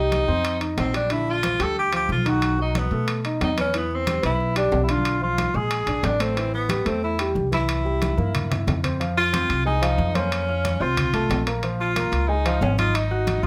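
An Afro-Cuban jazz groove moves at 182 BPM in a straight 4/4, with congas and timbales entering at 0.1 seconds beneath the opening chords. Up front, a clear tenor saxophone carries the solo melody with vibrato, scooped notes and a soft attack, its roomy, distant tone giving the line a sultry edge. A polished grand piano supplies present, warm accompaniment, while a woody, thumpy pizzicato upright bass anchors the low end prominently in the mix. The timbales ring with a metallic shell sound, and the thick-skinned congas sit in the background. A drum fill from 8.2 to 9.0 seconds launches a new section that settles into F minor, closing this fiery fragment of a longer piece under moderate studio reverb.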